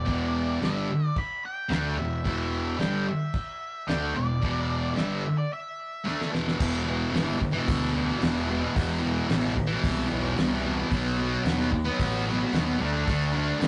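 Garage rock with a menacing swagger, cut from a longer piece: a bright, double-tracked fuzz guitar riff sits up front over overdriven picked bass and a cloth-damped, thuddy drum kit with a fat snare and dark cymbals, while a shadowy octave-fuzz lead with digital delay carries the melody until 6.3 seconds, fading out during a break and drum fill that hand off to a second section at 6.6 seconds, all captured as a rough rehearsal-room recording with tube saturation and moderate reverb.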